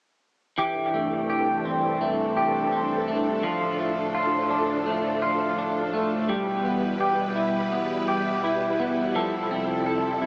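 A straight 4/4 pulse at 84 BPM carries this floating, blissful dream pop piece in C major, where a twangy, scooped, compressed clean electric guitar plays up-front arpeggios through analog chorus and dub echo over bright, vintage sawtooth string machine violas holding slow-attack chords with ensemble chorus, both running from 0.6 to 10.3 seconds across C6, Dm, Em and Fmaj7 in an echo-heavy mix with a long wet plate reverb and a small-speaker sound.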